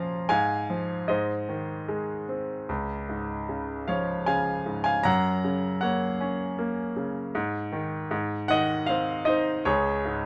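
Classical solo piano in a lyrical vein, this short passage cut from a longer piece moves at 77 BPM in 3/4 time with a rubato feel, set in D-flat major with tuning at A4 = 441 Hz. The mood is wistful and dark. A clear concert grand piano carries the whole passage from 0.0 to 10.3 seconds, spanning Db2 to C6, with a deep bass and a polished, present tone placed up front. The harmony passes from Fm/Ab through Ab to Db, then Gb, returning through Ab5 and Ab before settling on Db5 at 9.7 seconds. Light reverb gives the instrument a gentle sense of space.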